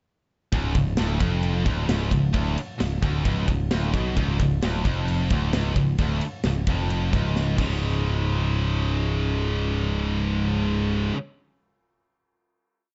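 A straight 4/4 pulse at 132 BPM drives this short, complete heavy metal piece, which feels epic and dark and centres on C#. The tight metal drum kit lays down a metal drive groove with a tight kick, a medium-tuned snare, bright cymbals and a polished, airy big-room sound. Two picked, high-gain electric guitars, one heavy and one scooped, play distorted single-note riffs low in their range. Beneath them, a growly, punchy picked electric bass sits up front with a direct tone, driving eighth notes that double the guitar riff. After a drum fill, the riff gives way at 7.8 seconds to a final hit on a C#5 chord; the drums stop at 7.7 seconds, and the guitars and bass ring until about 11 seconds. The production is dark and dry, with little reverb.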